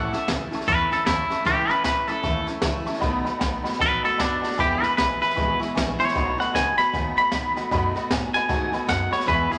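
A moderate large-studio reverb surrounds this short, rollicking rockabilly excerpt, which swings its eighth notes at 154 BPM in 4/4. Up front, a bright, clean, compressed electric guitar with a picked, twangy tone carries the melody as a solo throughout, bathed in spring reverb. Behind it, a detuned, jangly honky-tonk upright piano with a vintage character and short sustain plays in its upper register, while a full-bodied dreadnought acoustic guitar adds picked accompaniment. A woody pizzicato upright bass sits in the background, and a brushed jazz kit with a high-tuned snare, boomy kick and hi-hat comes in at 0.1 seconds, sounding as if in a small room. The harmony moves from A to B7 at 3.0 seconds, then to E and back to B7, keeping the upbeat mood rolling.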